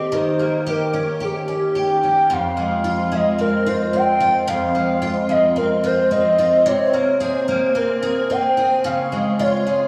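A warbling, detuned synth lead carries a nostalgic melody in F minor, sustained and touched with chorus, vibrato and analog delay, over a shimmering, octave-doubled twelve-string acoustic guitar picking full-bodied arpeggios up front from the first moment. This melancholic, ethereal dream pop moves at 110 BPM in a straight 4/4, shifting at 2.3 seconds from Eb7 to Fm7 before passing through C5 at 6.7 seconds and Db. A long plate reverb soaks the mix in a hazy, floating space across this short cut from a longer piece.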